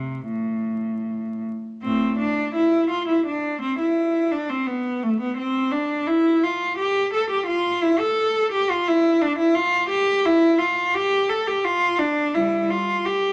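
A rich, up-front solo cello carries this introspective, solemn classical fragment, a baroque-style suite movement in 3/4 with a freely rubato feel. The single bowed player shapes expressive lines with vibrato and portamento across a range from A2 to A4, and a new section begins around 1.8 seconds. A large studio reverb surrounds the instrument, while vinyl crackle adds an aged surface to this short cut from a longer piece.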